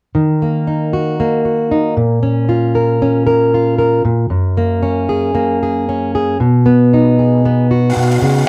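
A fingerpicked, plugged-in steel-string acoustic guitar carries this short folk fragment on its own, sitting up front with the dark, woody, full-bodied voice of a jumbo body strung with old strings. Cut from a longer piece, it plays from 0.1 to 8.5 seconds in a straight 4/4, with a mood that is nostalgic yet uplifting. The guitar moves through D#m, A#m, F#add9 and B, the add9 chord arriving at 4.3 seconds before the turn to B at 6.4 seconds. A cassette tape colour touches the guitar, fitting the home recording made on cassette. The small, wet booth ambience keeps the sound close and intimate.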